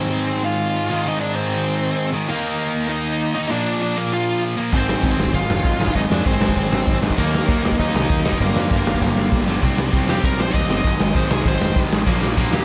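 Raw and lightly reverberant, this aggressive, angry punk rock excerpt opens on a dark, smooth overdriven lead guitar with tape echo singing up front over a bright overdriven electric guitar riff and a sludgy distorted guitar in the background, until a punchy, rolled-off garage drum kit and a growly fuzz bass crash in at 4.7 seconds, a drum fill at 9.0 seconds launching the lead into a solo to close.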